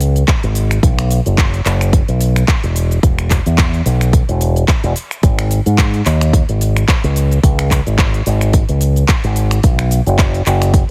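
Sensual and cosmic, this short nu-disco excerpt sits on a lightly swung groove built on a fingered electric bass, its envelope filter giving a warm, punchy tone that pumps with sidechain compression. A punchy, up-front electronic kick joins at 0.3 seconds, while a house kit adds finger snaps, handclaps, crisp hi-hats and shaker in a studio reverb. The mix is heavily compressed with a radio-like sheen inside a digital ambience.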